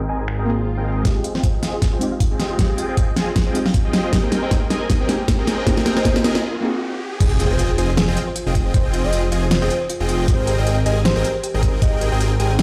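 Huge, bright supersaw chords with sidechain pumping and a filter sweep anchor this playful, lush future bass excerpt at 156 BPM in a swung half-time feel, as a dark, soft round pluck with dub echo opens over Abmaj9 and Fm9, then gives way at 7.2 s to the drop, where a thick detuned saw bass and a velvety, vibrato-tinged lead with tape echo return, while a tine-like thumb-piano-style pluck arpeggiates in the background from 1.1 s, a knocking electronic kick and an up-front pop kit of fat snare, crisp hats, finger snaps and crash drive the build-up and drop, and a very quiet swell, riser and impact add lift, with the mix sitting in a stone-room reverb.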